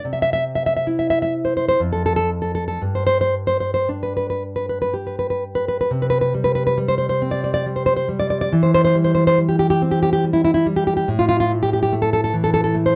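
A romantic solo classical guitar piece in C major and 3/4, this tender, nostalgic fragment moves with a rubato feel between 54 and 74 BPM. A single fingerpicked nylon-string guitar carries everything, its dark, full-bodied tone sitting up front in a dry, close 1970s-style studio sound. The harmony passes from C through a brief unharmonized moment to G5, and a second section begins at 5.9 seconds, moving through C5 and C/E before settling on A5 at 11.1 seconds.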